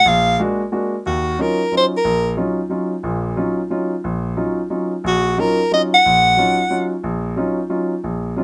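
Searching and intense, this swinging jazz fragment in three puts a bright, close-miked soprano saxophone up front, its vibrato-laden, scooped phrases opening the piece and returning at 5.1 seconds, over a warm, natural grand piano that accompanies from 0.1 to 8.4 seconds as the harmony moves from A#7b13 to Ebm9, captured with detailed close microphones and light reverb.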